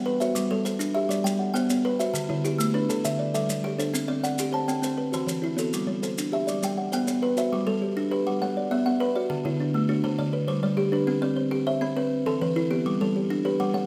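Set in a moderate recital hall reverb, this hypnotic, warm excerpt of southern African traditional music at 134 BPM in a straight 12/8 in G major layers a bright, buzzing, airy kalimba plucked with a thumbnail on a solid board against a second, dry, full, hollow-box kalimba under thumb pluck, both woody, up front and weaving interlocking mbira-style arpeggios, while grainy, mellow, saturated maracas sit further back and drop out at 7.5 seconds.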